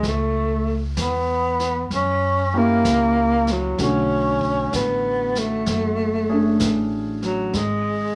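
A melancholic, wistful jazz ballad with a swing feel, led by an up-front, breathy tenor saxophone whose whispered subtone and scooped notes carry the melody over an intimate concert grand piano with audible action noise that drops out at 7.6 seconds, a woody, thumpy pizzicato upright bass, and a distant vintage brush kit with a rolled-off top, all set in light small-room reverb as the chords move from C#m7 through F#7b9 to Bm9.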